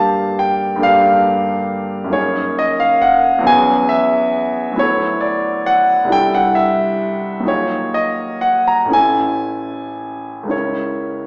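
In a rubato 6/8 lilt, this short cut from a longer impressionist solo piano piece drifts in a mysterious, wistful mood as a clear, intimate grand piano, placed up front with its action noise audible, glides through lush chords from Gm7 down through F#69, E69, D69 and C69 before colouring toward D#madd9, Amaj7 and C#m6, spanning A1 to A#5 in a wet recital hall reverb with a small speaker sound.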